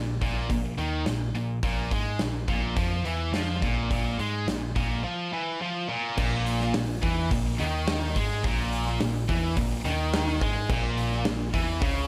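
A steady, straight 4/4 pulse at 106 BPM drives this heavy hard rock passage in Bb minor, cut from a longer piece. A gated 80s drum kit sits up front with a punchy kick, medium-tuned snare, hi-hat and bright crash cymbal, its polished, airy sound carrying a stone-room character. Two high-gain distorted guitars play the riff from the start, one prominent and the other scooped and set further back, both bright and picked between Bb2 and Ab3. An overdriven picked bass holds down the low end from Bb1 to Ab2 with a growly, punchy tone. At 6.2 seconds the harmony moves from a Bb5 power chord to Bbm, and a double-tracked overdriven guitar with a warm edge joins the riff in the background. Light studio reverb gives the whole a driving finish.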